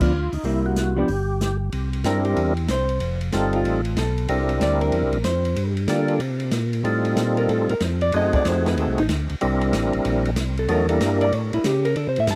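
Bluesy and greasy, this brief cut from a soul jazz organ trio swings at 187 BPM in C mixolydian, with a percussive tonewheel organ carrying the melody through a slow rotary speaker, overdrive, chorus vibrato and tape echo until 11.3 seconds, its key click sitting up front. A dark, clean hollow-body electric guitar comps beneath and takes a solo from 1.7 seconds, while a lightly overdriven organ bass on a stationary speaker anchors changes moving from C7 through F7, F#dim7 and Em7b5. An airy acoustic drum kit with dark cymbals, a medium-tuned snare and a boomy kick sits further back in a dry, close 1970s-style studio sound.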